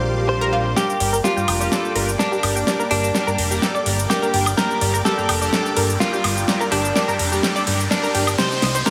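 An up-front, overdriven pop drum kit with a fat snare and metallic hats anchors this dreamy, emotional progressive house excerpt at 126 BPM in G minor. It enters at 0.8 seconds with cabasa, hi-hat, snare and woodblock as a drum fill runs through the build-up. A clean, direct-recorded electric guitar carries the picked melody from 0.3 seconds, treated with harmonic tremolo and tape echo. Beneath it, a thick, saturated analog bass holds the low end, while a glossy, retro polysynth plays chorused stabs with tape echo and a detuned supersaw pad sustains chords in the background. A round analog pluck spins arpeggios in lush chorus and tape echo under a filter sweep, and a background swell and riser add lift. The harmony moves from Bbadd9 to Gm and then to Cm, and the mix sits in a moderate hall reverb.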